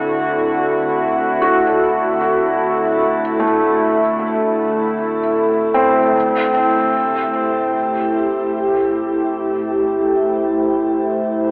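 Ambient piece in a melancholic, reflective mood, cut from a longer work, where a warbling, detuned tape-like pad holds sustained chords up front beside a felt-muted upright piano playing soft, intimate arpeggios with audible action noise, tape echo and shimmer reverb. At 6.2 seconds the harmony moves from D9 to Am7 and a filter sweep passes over the pad, and at 7.1 seconds a nasal, evolving analog drone with chorus enters low in the mix. The whole sits in a vast cathedral reverb with worn cassette character, pitch drift and a narrow telephone-like tone.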